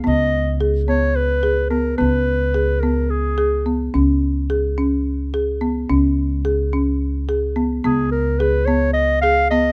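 Playful and shimmering, this short cut from a longer contemporary chamber piece moves briskly in 7/8 at 215 BPM counted in eighths, with a straight feel over a Db5 chord. A folk marimba played with medium mallets runs arpeggios on its hardwood bars from start to finish, sounding dry and rustic. An upright bass, plucked pizzicato on steel strings, holds a low Db2 throughout with an acoustic, woody tone. A mellow clarinet in classical style carries the solo melody from 0.1 to 3.7 seconds, falls silent, then returns at 7.8 seconds and plays to the end. All three parts sit up front, and the close, detailed recording with little reverb gives the trio an intimate presence.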